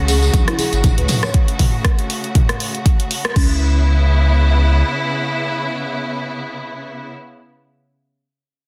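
Afro house at 119 BPM in C# minor, this short excerpt from a longer piece feels earthy and spiritual, riding a 16th-note swing. It opens on a drop over F#m, where a deep, round sine sub bass sits up front beside a deep, layered electronic kick that enters at 0.3 seconds. A deep house drum kit adds crash, hi-hat, rim click and toms, with soft clipping on the snare, while thick-skinned congas and a jingly, vintage tambourine play briefly in the background until 1.3 seconds. Soft-mallet folk marimba arpeggios sound woody and rustic, touched with tape echo, as a lush, bowed string section holds sustained chords from a distance, both pumping against the sidechain like the bass. After a band accent at 3.2 seconds, the music settles onto C#m7; the sub bass holds until 4.8 seconds and the strings carry on until 7.1 seconds, all in light reverb and a dense, heavily limited master.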